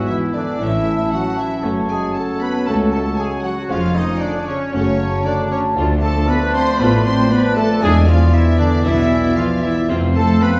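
In a straight, quick 4/4, this urgent, dramatic classical-period orchestral passage, cut from a longer movement, sets a rich, vibrato-laden violin section on the melody while a second violin line joins at 0.1 s, and mellow flutes, a clear oboe and a dusky solo clarinet weave supporting lines in the background. A warm bassoon fills the accompaniment from the start, joined at 0.6 s by very quiet, focused violas, as smooth cellos and lush, expressive double basses also enter on the bass, while dark French horns hold sustained chords and a tight, roomy trumpet section punctuates with stabs. The harmony moves through major and minor colours, and the whole orchestra is heard from further back in a reverberant recital hall.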